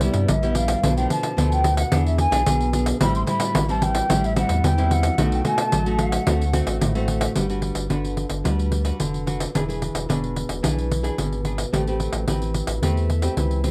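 A festive, joyful blend of samba and choro opens at 110 BPM in a straight 4/4. An airy, hollow concert flute carries the melody between D5 and C6 over fingerpicked nylon-string guitar, a round sub bass and a jingly pandeiro. The flute sits distant in plate reverb with a soft attack and a straight, mellow tone, and it stops at 6.8 s, leaving the other three parts to play on to 13.7 s. Up front, the bright, classical guitar shows audible finger squeak and cassette tape grain under its own plate reverb, while the deep, sine-like bass holds sustained notes with a fast attack and the close pandeiro is struck with hard hands. The harmony moves through Cmaj7, Bm7b5, E7 and Am7 before settling into G major at 7.4 s with Gmaj7, E7 and Am9. Tuned to A4 = 435 Hz and captured as a home cassette recording in a small room, this passage is cut from a longer piece.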